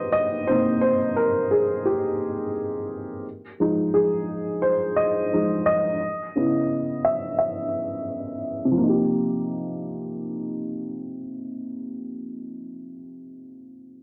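Hip hop with a hazy, nostalgic mood, cut from a longer piece, where a solo upright piano, mellow, woody and slightly detuned, sits up front with a swung sixteenth-note feel over minor seventh chords, colored by cassette tape character, a low-pass filter, a filter sweep from 0.0 to 8.8 seconds and the wet reverb of a small room.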